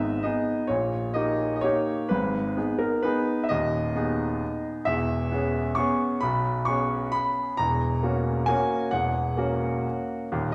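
A brilliant, up-front grand piano plays solo through this short classical waltz excerpt, graceful and playful at 131 BPM in 3/4 with uneven, rubato beats, spanning D#1 to C#6 over chords that move from G#m through D#7/A# and E6 to F#7/E, its open, long-sustaining tone tuned to A4 = 438 Hz and bathed in the wet reverb of a recital hall.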